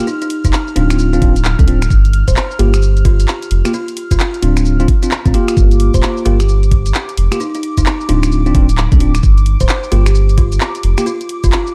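UK garage two-step at 131 BPM in G minor, bouncy and soulful with a 63% swing on the sixteenths, built on a deep, round sub bass with tube saturation and a knocking, layered electronic kick, while a tape-warm garage kit of finger snaps, handclaps, hi-hat and shaker skips along, a bell-like tine electric piano stabs chords through lush chorus, a buzzing, woody kalimba plucks the melody into dub echo, and a mellow detuned sawtooth pad with sidechain pumping sits in the background over a cycle of F5, Dm7, G7(omit3) and Gm7 in this dark, close-sounding excerpt.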